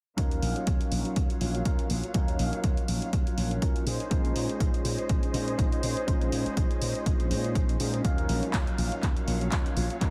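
This filtered disco house excerpt has a sensual, groovy feel with a light swing, and a filter sweep runs through the whole passage. A punchy electronic kick, re-recorded in a large room, anchors the groove. It sits beside an analog drum machine playing handclaps and hi-hat, with tape echo and sidechain pumping on the hats, while a distant, barely audible tambourine adds faint shimmer. A growly, bright slap bass with an envelope filter and tube saturation carries the low end. Above it, an overdriven, gritty tine electric piano through a combo amp comps with phaser, 12-bit sampler grit and tape echo. A rich, biting symphonic string section holds sustained chords with light vibrato, and a dark, clean, fingered electric guitar riff sits in the background. The harmony moves from Ebm9 to Bbm11 at 3.9 seconds and returns at 8.0 seconds, in a dry, echo-heavy mix.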